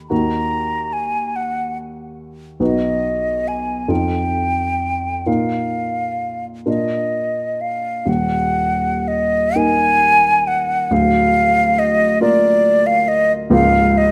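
Close, detailed microphones in a recital hall with moderate reverb catch the action noise of a dark, intimate grand piano, whose short sustain contrasts with an airy, hollow silver concert flute carrying the melody with vibrato and tongued notes, both up front. This solemn, melancholic romantic duo, cut from a longer piece, moves in a slow, rubato 6/8 in Eb minor, the piano accompanying from the low bass while the mellow flute sings between D5 and Bb5. Harmonies pass from Ebm through F7 and a Bbsus4 resolving to Bb, then a new phase begins at 8.1 seconds, returning to Ebm and closing on Bbm/Db at 13.5 seconds.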